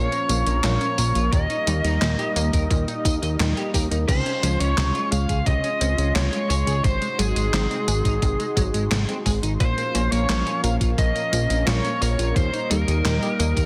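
A biting, overdriven lead guitar leads this romantic, nostalgic synthwave passage in Db major, carrying the picked, up-front melody through tape echo over a smooth, mellow sawtooth pad that breathes with sidechain pumping and chorus. Beneath them, a fat, detuned analog bass holds the low end with a thick, fast-attack sound, while a round, bright analog pluck spins arpeggios in the background through chorus and tape echo. From 0.1 s a gated 80s digital drum machine adds snare, handclaps, hi-hat, tambourine and crash cymbal, all bathed in gated reverb, and a clean, twangy electric guitar picks a riff steeped in ensemble chorus, 12-bit sampler grit and echo. A thumpy electronic kick drum joins at 1.3 s, and the straight 4/4 groove at 87 BPM rolls through a Bbm, Eb, Dbmaj7 and Ab7 progression. Cut from a longer piece, it has a dense, heavily limited modern master with light reverb.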